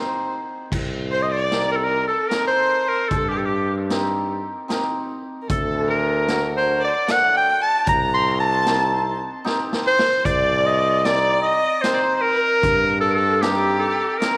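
A straight 3/4 lilt at 76 BPM carries this soulful, bittersweet klezmer in C dorian sharp4, where a bright, up-front clarinet with light vibrato, scooped notes and tape echo takes a jazz-style solo from 0.7 to 10.2 seconds over a rich, distant bowed violin with portamento, a shimmering hammered dulcimer, a roomy tuba bass and a boomy street-band drum kit whose fill at 9.5 seconds ushers in the closing section, set in a moderate echo-chamber reverb.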